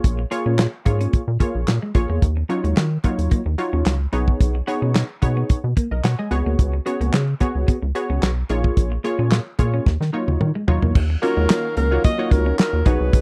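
Early-eighties boogie funk in Eb minor at 110 BPM, slick and funky, with a damped 70s drum kit of tight kick, dark cymbals and handclaps up front beside a rubbery, hollow square-wave bass, while a punchy polysynth comps with chorus over chords such as Bbm7 and Ebm9. A clean, twangy electric guitar riff sits in the background, and a drum fill at 9.9 seconds leads into a new section at 11.0 seconds, where a lush, warbling unison pad enters very quietly. At 11.2 seconds a breathy alto saxophone takes the melody with light vibrato and slapback echo, all captured in a dry, close 1970s-style studio sound in this short cut from a longer piece.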